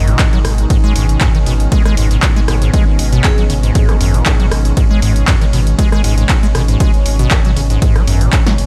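A detuned sawtooth pad opens this raw, gritty acid house excerpt, its sustained chords warbling through lush chorus and pumping against the sidechain, while a deep, round sine sub bass holds the low end beneath it. A squelchy, hollow square-wave acid bass riff runs alongside from the start, resonant with a filter sweep, given subtle chorus and tape echo. A punchy analog drum machine brings handclaps, hi-hat, ride cymbal, rim click and snare, tape-warm and re-recorded in a small room, as an up-front electronic kick drives a swung groove. Briefly, at 3.2 seconds, a bright, metallic vibraphone struck with hard mallets rings a single note in the background through analog delay. A drum fill lands at 8.5 seconds, and the whole mix sits in an echo-heavy digital ambience that heightens its gritty club character.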